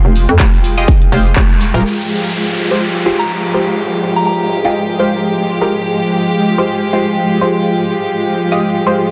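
A hollow, knocking FM bass with a filter sweep leads this gritty, swaggering bass house cut in F minor at 124 BPM with a 16th-note swing, bouncing up front over a punchy layered kick and a big-room kit of handclaps, metallic hi-hats and shaker, while a nasal, band-passed sawtooth chord stab with phaser and dub echo and a cloudy granular pad pump throughout; when the bass and kit stop at 1.8 s, a rich, earthy chamber string section takes over under a low-pass filter alongside an electronic downlifter, and a soft, pure synth bell with chorus adds a mellow touch at 3.2 s, all within a lush hall and a dense, heavily limited master.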